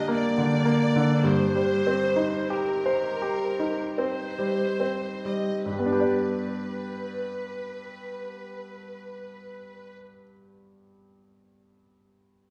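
In a flexible, rubato triple metre that slows through its first 5.7 seconds, this tragic, passionate classical fragment sets a bright, brilliant baby grand piano up front beside a lush, bowed violin section singing with vibrato. At 5.7 seconds the harmony turns from minor colours to a major chord; the strings then fall away at 9.9 seconds, leaving the piano to carry the melody alone until 12.5 seconds. A wet recital-hall reverb places the listener further back in the room.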